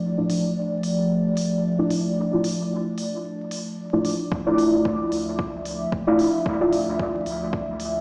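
Dub techno at 112 BPM in D minor, this hypnotic, deep excerpt cut from a longer piece rests on a single Dmadd9 chord with a gentle 16th-note swing. A moody analog pad holds sustained chords from the start, its detuned square and sawtooth layers swelling in slowly under chorus, phaser and sidechain pumping. Just after it, a soft, mellow chord stab sits up front, its detuned, decaying hits trailing dub echo while a filter sweep moves over it across both halves. Smooth electronic hi-hats enter at 0.3 s, and at 4.3 s a layered kick and a round analog bass on D2 arrive together, the bass pumping beneath the chords. The whole is steeped in digital room reverb and set in a bare stone room as if played on a big sound system, with vinyl crackle and a small-speaker tone.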